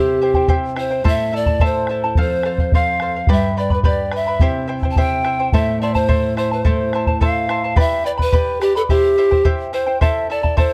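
In a straight 2/4 at 107 BPM, this festive yet wistful Andean folk excerpt in A minor sets an up-front, round bombo entering at 0.3 s beneath an airy, chiffy wooden pan flute melody, shimmering double-string charango fingerpicking, and a full-bodied classical nylon-string guitar with audible finger squeak that drops out at 7.7 s, all captured with close, detailed microphones and light reverb.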